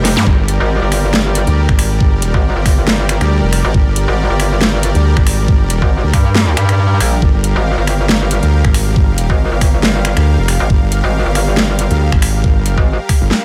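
This heavy, aggressive dubstep passage features a metallic wobble bass, its FM-built tone bright and saturated, thickened by chorus and overdrive as it sits up front between F1 and G2. Alongside it, a second wobble bass blends sawtooth and sine into a compressed, weighty growl, entering at 0.3 seconds and reaching from F1 to D2 with the same chorus and overdrive. The groove runs at 138 BPM in 4/4 with a half-time feel and a 55% swing on the sixteenths, set in G phrygian over a G minor chord. A dubstep drum kit opens with a fill at 0.0 seconds, its huge snare, metallic hi-hats and finger snaps placed up front, while a layered electronic kick adds a knocking, tape-warm punch. A lush supersaw pad of detuned sawtooth voices holds sustained chords from G3 to G5, its slow attack and long release pumping against the sidechain. The mix is dry, with little reverb, and the passage is cut from a longer piece.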